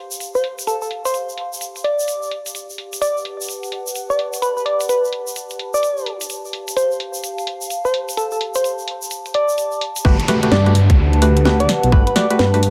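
UK garage in a sunny, bouncy two-step groove at 128 BPM in G major, where a round, gentle keys-like synth lead with chorus and delay floats over a warbling, nostalgic lo-fi pad, a grainy egg shaker and a tape-toned garage kit with a cracking, low-passed snare, until the drop at 10.0 seconds brings in a tight kick, a deep, rumbling detuned saw bass with tube saturation, hollow organ-like stabs and a downlifter, as this excerpt from a longer piece moves between Fadd9 and Gmaj9.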